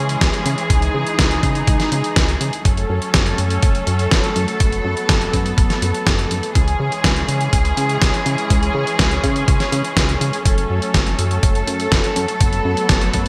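Italo disco in a straight 4/4, this brief passage cut from a longer piece feels melodramatic and nostalgic as it rocks between C#m and F#m. Muted studio strings, bowed con sordino with vibrato, hold veiled sustained chords up front from the very start. Underneath, a chorused synth bass blends pulse and sawtooth tones with ring modulation and wave-folding, giving a glossy, dark plucked attack that sustains beneath the harmony. A gritty, compressed sampler-style kit supplies hi-hat and a fat snare with gated reverb and small-room ambience, while a separate thumpy, tape-tinged electronic kick sits in its own small room. The whole is bathed in a moderate lush hall reverb of 1.7 seconds, with bright 1980s-style digital production.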